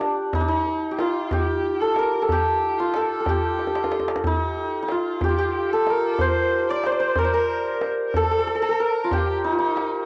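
A bright, shimmering santur carries the melody up front from the first moment, alongside a distant bowed violin whose vibrato and portamento trace an expressive second line, both colored by cassette tape, while a deep, saturated tombak keeps a straight 6/8 pulse at 62 BPM. This Persian modal ensemble piece, cut from a longer work, feels longing and hypnotic, with a tombak fill between 3.6 and 4.2 seconds. A moderate spring reverb and the home-cassette recording shape the sound of the whole.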